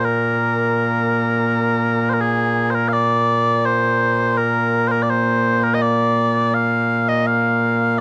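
Set in a dark production with light reverb, this short cut from a longer Scottish traditional piece in triple time features mellow small bagpipes alone and up front, their sweet, continuous tone touched with vibrato, carrying a proud, ceremonial air across its 8.0 seconds.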